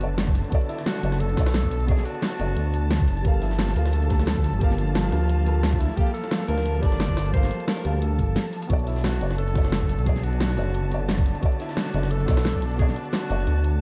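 A knocking electronic kick and a pop kit's fat snare and hi-hats drive this dreamy, soulful liquid drum and bass excerpt at 176 BPM with a light swing, while a gritty, pitched-up jungle sampler kit sits in the background, with the kick entering at 0.3 s and a brief break arriving at 8.4 s. A deep, rumbling detuned saw bass sits up front, underpinning lush, bowed symphonic strings and a mellow, felt-muted upright piano whose analog delay trails its short, intimate notes. Over the harmony's shift from Bm9 to Gm9 and back at 8.7 s, a solo alto saxophone sings a vibrato-rich, pop-style melody bathed in diffuse ambient delay.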